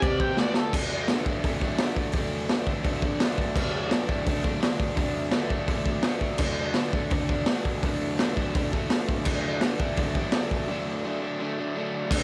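A bright, overdriven electric guitar drives this raw, swaggering garage rock cut in D major at 168 BPM, its double-tracked picked riff sitting up front for the full 12.2 seconds, while a dark octave-fuzz lead guitar with cassette-tape grit flashes a brief melodic line only until 0.7 seconds. The acoustic drum kit pounds out a straight 4/4 with a punchy kick, medium-tuned snare and dark cymbals, its saturated, rolled-off sound pumping in a small room, with a fill at 0.4 seconds and a break from 10.7 seconds. Recorded at home on cassette with little reverb, this excerpt from a longer piece feels gritty and close.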